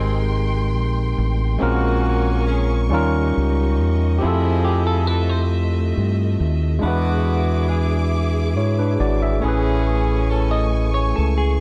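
A gritty, barky overdriven tine electric piano plays accompaniment over a round, dark dub fingered bass, lush bowed studio strings and tight jazz-style horn stabs in this yearning, late-night R&B excerpt at 46 BPM in 6/8, moving from G#maj7 through Fmaj7 and E7 to Amaj7 in a small room, while a clean hollow-body electric guitar with delay adds a second line at 4.6 s and again at 10.5 s.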